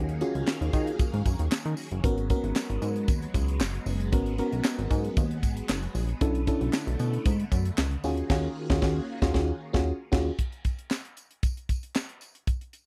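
A slick, danceable early-eighties boogie funk groove in G# minor at 115 BPM opens with a mellow, phased FM electric piano, a swirling, bright string machine with ensemble chorus and phaser, and a glossy, chorused synth bass with filter sweeps, as a tight, dry funk kit with high-tuned snare, handclaps and crash quickly joins, backed by a jingly tambourine in the background. The keys and bass move through lush minor-eleventh chords from D#m11 to G#m11 and Bm11, and the whole band hits an accent before the harmony drops away at 10.4 seconds. From there only the drums and tambourine carry on in the close, dry studio sound until this fragment of a longer piece ends at 12.9 seconds.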